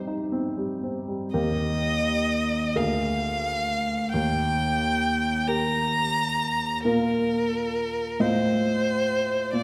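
Elegiac and solemn, this romantic classical duo in Eb major moves at a slow 44 BPM in a rubato 6/8, with a worn, present grand piano opening alone on a Cm chord before a focused bowed violin with vibrato enters up front at 1.4 seconds to carry the melody over chords drifting from Eb through Bb7/D to F7/A, all bathed in the wet reverb of a scoring stage in this fragment cut from a longer piece.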